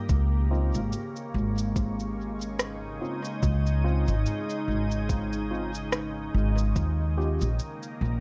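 An echo-heavy digital ambience frames this peaceful, spacious ambient dub excerpt at 72 BPM with a gentle 16th-note swing, where a woody, growly pizzicato upright bass sits up front beneath a pure, bright organ-like pad that slowly evolves through chorused, reverberant sustained chords with a faint 12-bit grit, while a soft overdriven electronic kick stays in the background, an overdriven electronic cabasa and rim click trail dub echoes through a small room, and a worn, slightly out-of-tune tine electric piano adds filtered, echoing stabs from 0.5 to 7.5 seconds as the harmony moves from Dbmaj9 to Eb9 at 6.8 seconds.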